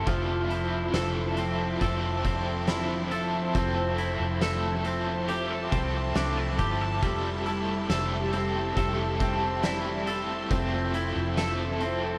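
This dream pop excerpt opens with everything arriving at once: a slow, straight 4/4 groove carrying a floating, ethereal mood over chords that move from Dm9/F to Fmaj7 at 3.6 seconds. An up-front, double-tracked overdriven guitar plays accompaniment with tremolo, lush chorus and dub echo, while a bright, twangy clean guitar picks compressed arpeggios through the same chorus and echo. Alongside them, a string machine voiced as cellos holds sustained chords with a full-bodied sawtooth tone, soft attack and sub octave, shimmering with ensemble chorus. A round, foam-muted vintage bass anchors the low end, and an oversized, low-tuned drum kit with a punchy kick, fat snare, hi-hat and tambourine sounds gritty and saturated in a bright stone room, its hits trailing dub echo. A very quiet, bell-like celesta glints in at the start and returns from 7.0 to 10.9 seconds, all set in an echo-heavy mix with a moderate echo chamber reverb.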